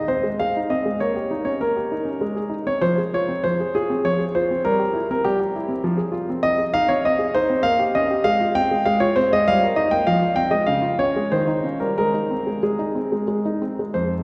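Serious and elegant, this short excerpt from a classical-period piano sonatina in 3/4 unfolds with a rubato feel on a solo concert grand, its intimate, up-front tone carrying deep bass, a smooth vintage character and audible action noise, all set within a cathedral reverb that lets each phrase ring long as the harmony travels from Ab through minor and diminished shadings to settle home at 12.0 seconds.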